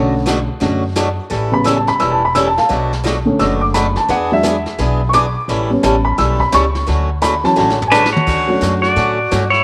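This down-home, playful western swing country fragment opens with a dark, mellow upright piano taking the lead in a solo over a bright, boxy picked acoustic guitar and a woody, thumpy pizzicato upright bass. A vintage brush drum kit joins almost at once, its brushed snare, punchy kick and dark cymbals giving the groove a rolled-off, natural feel. The tempo is a brisk 172 BPM in 4/4 with a swung eighth-note lilt, and the harmony in D major moves from Bm7 through A7 and E7 to a resolving Dmaj7. A drum fill arrives at 7.6 seconds, and at 7.9 seconds a clean, compressed pedal steel guitar steps up front with the melody, using fingerpicks, slide and volume swells. The whole band sits in a small room ambience with a wet spring reverb, and the passage is cut from a longer piece.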